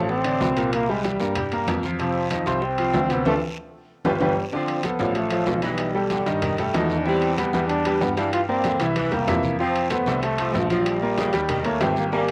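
With the hiss-tinged intimacy of a home cassette recording in a modest room, this festive, joyful salsa fragment opens with a bright, lightly vibrato trombone carrying the melody over a brilliant grand piano accompaniment, full of audible action noise and long sustain, while a baby grand piano with a short, natural sustain plays the bass line. Underneath, very quiet congas and round, low-tuned bongos blend with a raspy guiro and ringing metal-shell timbales, and the whole band lands an accent from 3.3 to 4.5 seconds. A tight, clear saxophone section enters at 4.5 seconds with a second line in the background, and a drum fill from 9.0 to 9.6 seconds leads into the final bars.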